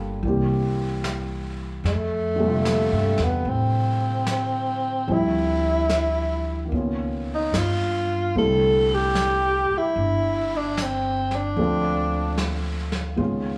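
Tender and romantic, this excerpt is a swung jazz ballad in C major at 74 BPM, where a breathy tenor saxophone enters at 1.9 seconds and carries the melody up front with mellow subtone, vibrato and scooped notes until 12.4 seconds. Beneath it, a grand piano with audible action noise plays an intimate accompaniment, a woody, growly pizzicato upright bass holds the low end, and a vintage brush drum kit with a rolled-off top keeps time on brushed snare and hi-hat. The chords move from C7 through F69, Dm11 and Db13 to C69 and Dm7, all set in a large studio reverb heard from further back in the room.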